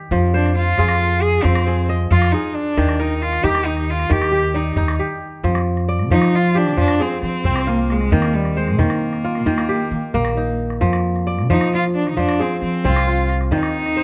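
Close, detailed microphones and light reverb frame this hypnotic, reflective fragment of West African string and xylophone music, moving in a straight 12/8 at 89 BPM in F dorian as the harmony alternates between Fm and Eb. A ringing, fingerpicked kora spins crisp arpeggios up front, while a woody, growly pizzicato upright bass on steel strings anchors the low end and a small, compressed, saturated calabash keeps the percussion. A single bowed cello, smooth and clear with light vibrato, takes a solo over the first 5.4 seconds and carries the melody through to the close.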